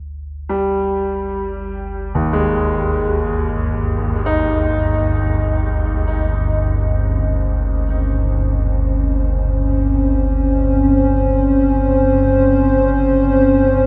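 A deep, rumbling drone fades in from the very start of this dark ambient excerpt, its detuned, warbling tone carrying a vintage character and its own built-in reverb, with a subtle chorus. At 0.5 seconds a bright concert grand piano begins playing arpeggios that reach from the low register up into the middle, its brilliant, open sound ringing with long sustain and trailed by delay. At 4.9 seconds a dark analog pad arrives with sustained chords higher up, its moody, ring-modulated tone thickened by a sub octave and chorus. All three parts sit up front, bathed in a huge ambient reverb that lends the music an ominous, desolate atmosphere as it drifts in free time, cut from a longer piece.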